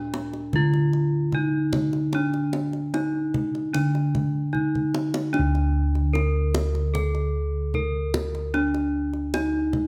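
A bright, ringing bronze metallophone melody and round, mellow bossed gongs with a beating tone open this hypnotic, shimmering fragment of Javanese gamelan in D pelog at 75 BPM, joined at 0.1 s by a tight kendang played with hard hands that adds a drum fill from 4.5 to 5.3 s before the phrase repeats, all set in a moderate recital-hall reverb.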